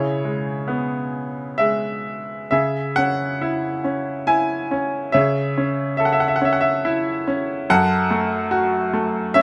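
Melancholic and dark, this short passage cut from a longer classical piece is a lyrical solo for a bright baby grand piano, played with a flexible, rubato feel in triple metre. The piano carries the whole recording from 0.0 to 9.4 seconds, ranging from F#2 up to G#5. Its tone is brilliant and natural, set up front in the sound with a light reverb around it. The harmony moves through C#m7, C#m, A/C# and F#m, and the music shifts into a new section at 2.5 seconds. That contrast between the piano's sparkling timbre and the sombre chords gives the fragment its brooding, introspective character.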